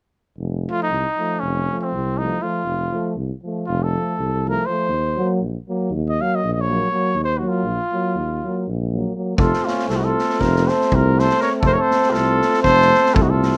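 In free time, this restless, virtuosic Balkan brass band piece in F phrygian dominant opens at 0.4 seconds with an up-front, mellow tuba on the bass, soon joined by a vibrato-laden classical-style trumpet carrying the melody up front and by a smooth-topped trombone and warm euphonium holding quieter accompaniment, before a vintage flugelhorn second line and an acoustic street-band drum kit with boomy kick and medium-tuned snare arrive at 9.4 seconds, set in light reverb as the harmony moves from F to Ebm and back to F.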